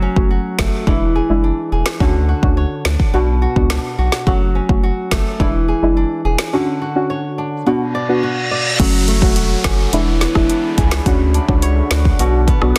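Sultry and tough, this dancehall excerpt moves at 106 BPM in a straight 4/4 feel in F# minor, cycling through F#m, E7, Dmaj7 and Bm. A fingerpicked acoustic flamenco guitar spins arpeggios over a round analog bass that sits deep and sustained with a fast attack. Up front, a layered electronic deep house kit drives the groove with a deep kick, a woody snare carrying soft clipping, dark hi-hats, rim clicks, finger snaps and crash. Mellow chord stabs, detuned and warbling with a vintage character, pump through sidechain and chorus. A reverse cymbal and downlifter enter at 8.0 seconds to lead into the next section at 8.8 seconds, and at 9.5 seconds a moody, slow-attack ambient pad settles into the background with chorus and its own reverb. The mix carries light digital ambience and a dense, heavily limited modern master.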